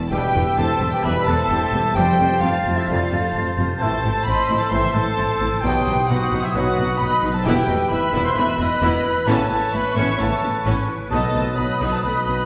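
A straight 4/4 pulse at 131 BPM drives this swashbuckling, determined cinematic cue in E harmonic minor, cut from a longer piece. A lush, expressive violin section with a soft attack carries the melody over ringing, fingerpicked concert harp arpeggios and a bowed bass of focused cellos and expressive double basses, while airy flutes, a close-miked clarinet, a distant oboe and a smooth second violin section add background lines. Very quiet violas accompany, mellow French horns and tight, vintage-toned trombones hold sustained chords beneath stabs from a dark trumpet section, and a reverberant recital hall surrounds the ensemble as the harmony moves from Em through Fadd9 and Am to a closing B7 at 11.1 s.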